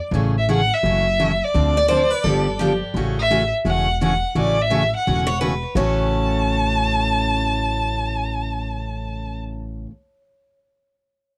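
A rich, expressive violin carries the melody with vibrato and portamento in this charming, playful passage of acoustic string swing in the jazz manouche style, moving at 170 BPM in A major with a swung eighth-note feel. Beneath it, a bright picked steel-string acoustic guitar with fresh strings plays the accompaniment, and a woody, thumpy pizzicato upright bass on gut strings anchors the low end. A full-bodied jumbo acoustic guitar adds a second line with audible finger squeak and tape echo at 1.8 s and again from 5.3 s, all captured with moderate booth ambience on a home cassette recording that lends the violin and both guitars a tape-worn character.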